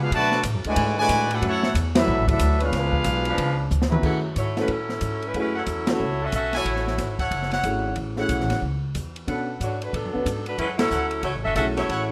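Big band swing jazz in F# minor at 183 BPM, brassy and dramatic, opens with a soft-edged trumpet section on the melody over a mellow trombone second line, sustained trombone chords, woody, thumpy pizzicato upright bass and a dark-cymballed acoustic drum kit with a punchy kick. After a drum fill at 3.7 seconds, a warm upright piano and tight, close-miked trumpet stabs arrive at 4.0 seconds, and a clear saxophone section with vibrato takes over the melody from 4.4 seconds. It is all set in a moderate large-studio reverb with a faint mains hum.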